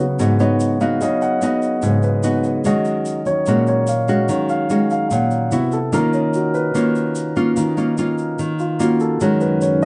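A dark, softly reverberant mix frames this wistful, melancholic bossa nova fragment in Eb minor, moving at 146 BPM in a straight 4/4. Up front, a full-bodied, fingerpicked nylon-string guitar with audible finger squeak accompanies a warm grand piano that takes a long-sustaining solo throughout, while a faint, grainy, mellow tube shaker enters at 0.2 seconds. The harmony drifts from Db9sus4 through Ebm7 and Cmaj7#11, and at 9.2 seconds a deep, detuned analog pad with chorus and a slow attack enters on a final Ebm7.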